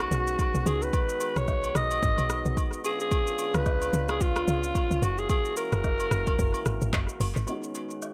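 Amapiano with a relaxed, soulful mood, this short passage from a longer piece sits in a swung sixteenth-note groove and an echo-heavy studio ambience, opening on a drop. A raspy, growling alto saxophone carries the melody up front with vibrato and vintage grit, treated with a low-pass filter and analog delay until about 6.9 seconds. Beneath it, a dark, distant French horn section holds sustained chords with light vibrato, filtered and pumping against the sidechain, while a tight, punchy log drum bass with a fast attack and decaying tail drives the low end. The layered deep house drum kit brings a deep kick, metallic hats, handclaps, rim clicks and shaker with a tape-like character and analog delay, and agogo bells and woodblock sit in the background from 0.4 seconds in a band-limited, acoustic tone. At 7.5 seconds a clear, worn grand piano enters up front with filtered accompaniment as the harmony returns to the B69 chord it began on.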